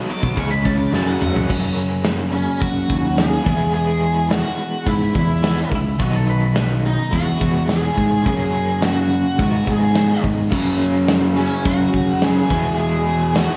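Classic rock at 106 BPM in a straight 4/4, this confident, swaggering excerpt opens with a short lead guitar solo and a drum fill before settling into a riff-driven groove over chords moving from C#m through F#, E, B and G#m. A warm, overdriven rhythm guitar with tremolo carries the riff throughout, joined at the start and again from 10.5 seconds by a raw, bright garage guitar, while a dark octave-fuzz lead with wah and distortion sings a high melody above a growling, up-front fingered bass and a polished, gated 80s drum kit with airy, bright cymbals and a tight kick. A clean, twangy lap steel slide line slips in briefly at 5.8 seconds, all set in a light studio reverb.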